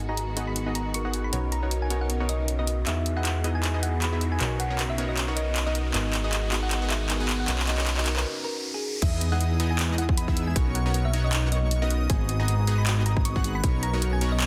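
The sound is dense and heavily limited, with light reverb and a digital ambience around a euphoric, playful slice of future bass in B major, at 156 BPM in a half-time feel with swung sixteenths. A mellow tine electric piano and lush bowed strings in the background carry the chords, a punchy detuned supersaw stab plays a riff, and a fat, thick analog bass sits up front, all of them pumping against the beat. A round, tine-like thumb-piano-style synth pluck plays the melody through chorus, phaser and delay, and a layered big-room kit with crash, handclaps and hi-hat drives the build-up as filter sweeps open the supersaw and the pluck and a riser climbs from 2.2 seconds. After a drum fill and a short break, the drop lands at 9.0 seconds, where a hard-clipped electronic kick punches in, an airy, dreamy lead adds high arpeggios with vibrato, and a second, very quiet pluck arpeggiates underneath. 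The harmony cycles through G#m7, Bmaj9 and Emaj7, keeping the mood bright and buoyant until the piece is cut off at 14.5 seconds.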